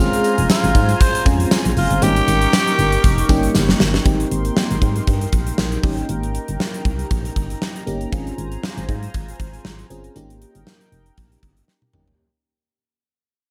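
A raspy, growling tenor saxophone with digital delay opens this romantic, uplifting 1980s-style pop fragment at 118 BPM, singing over a lush, chorused and phased FM electric piano, a shimmering pulse-width pad, a round, punchy FM bass and an up-front gated drum kit with a very quiet jingly tambourine, before the sax drops out at 3.5 seconds and a drum fill leads into a fade-out from 4.1 seconds over chords moving between Dbmaj7, Eb7 and Cm7/Ab.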